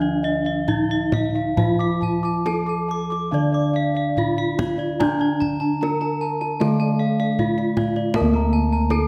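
Hypnotic and stately, this fragment of a longer Javanese gamelan piece moves in a straight 4/4 at 67-79 BPM in D pelog. A shimmering, close-miked bronze metallophone with paired tuning carries the melody over a second metallophone struck with wooden mallets in the lower accompaniment, while bright, airy bossed gongs and a horn-mallet metallophone weave high arpeggios. Mellow, padded bossed gongs anchor the bass, and tight kendang played with soft hands joins at 0.7 s, all set in the lingering reverb of a recital hall.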